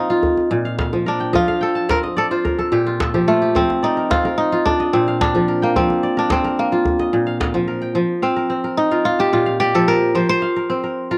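Two ringing, fingerpicked koras sit up front in this joyful West African string piece at 109 BPM in F mixolydian: one carries the melody while the other spins crisp arpeggios over a steady Bb-to-F chord swing, and a kora fill arrives early on. A tight, cracking djembe with a vintage, band-limited tone drives the straight 4/4 pulse from 0.2 until 7.7 seconds, and then the kora takes a solo from 8.0 seconds to close this section cut from a longer piece. The sound is dry and close, like a 1970s studio session, with just a light touch of reverb.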